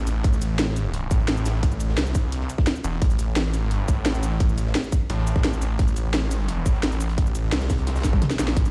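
A snarling, detuned sawtooth bass opens this tense, futuristic slice of dark technical drum and bass, growling up front with distortion in a low register around A phrygian at 173 BPM. A tight electronic kick and a layered drum and bass kit with a cracking snare, cabasa, hi-hat and toms drive the straight 4/4 groove, while a very quiet, gritty breakbeat kit with a rolled-off top sits far beneath. The mix sounds like a big sound system in a bare room, and a drum fill arrives at 8.0 seconds before the cut at 8.7 seconds.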